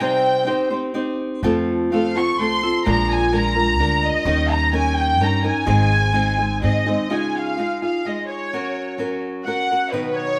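A stone room's moderate reverb surrounds a band playing live together, with a faint mains hum underneath. This proud, romantic mariachi piece in 3/4 moves at 127 BPM with a straight feel, is tuned to A4 = 438 Hz, and is cut from a longer performance. Up front, a dark violin section carries the melody with lush vibrato, bowed sul tasto for a woody ensemble tone. A fingerpicked nylon-string guitar accompanies in a classical style, its finger squeaks audible. An upright bass plays pizzicato from 1.4 s to 6.9 s, growly and thumpy on steel strings. The key moves from Ab major to Db major at 7.1 s, where the harmony settles onto Dbadd9 and then Gb.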